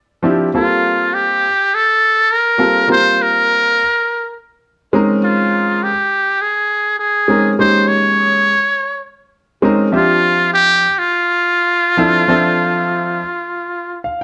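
Nocturnal yet driving, this short jazz passage in D minor moves at 102 BPM in 4/4 with a light sixteenth-note swing. A muted trumpet carries the melody from 0.6 seconds, its metal mute giving a brilliant, buzzy, thin tone with vibrato and a smooth top, played solo in a jazz style and set up front with a slapback echo. A clear grand piano supplies the accompaniment from 0.2 seconds, sounding natural and intimate, with audible action noise. The harmony drifts through rich minor eleventh chords, moving from Dm11 to Gm11 and Bbm11 before returning to Dm11. Near the close, the piano adds a brief fill at 13.8 seconds, and moderate studio reverb gives both parts a sense of room. The passage is cut from a longer piece.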